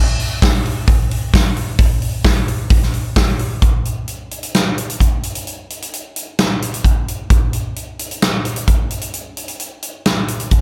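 A big, natural-sounding acoustic rock drum kit sits up front with a punchy kick, a medium-tuned snare and hi-hat, driving a straight 4/4 groove at 131 BPM with a restless, bittersweet mood in a dry mix, entering at 0.2 seconds and switching to a half-time feel at 3.6 seconds through to the cut at 10.6 seconds.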